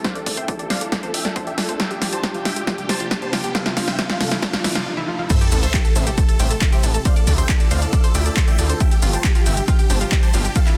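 A straight, punchy pulse from an overdriven electronic kick drives this euphoric uplifting trance clip, with an analog drum machine adding a punchy snare, handclaps, hi-hat, shaker and crash through a fill that ends in a break at 4.9 seconds. A huge, detuned supersaw lead carries the melody through a phaser, dub echo and a filter sweep, over a round analog pluck arpeggio with tape echo and a dark, shimmering ambient pad with granular, 12-bit grit, all three pumping against the kick, while a very quiet riser and sub drop enters at 2.4 seconds. At 5.3 seconds the drop lands with an impact, and from 5.5 seconds a gritty, aggressive sawtooth bass with ring modulation pushes up front beneath the dense, heavily limited mix.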